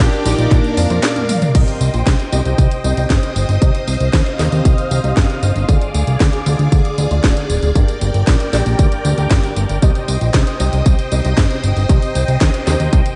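A dreamy, reverb-soaked mix with vinyl crackle frames this nostalgic, danceable italo disco cut from a longer piece, where a bold, brassy analog synth brass melody with chorus and delay sounds only in the opening 1.3 seconds, overlapping the start of a drum fill, while a swirling phased string machine holds bright sustained chords, a background baby grand piano adds intimate stabs with audible action noise, a fat, saturated analog bass with a filter pluck sits up front, and a punchy electronic kick drives a house kit of cracking snare, handclaps, hi-hat, tambourine, toms and crash.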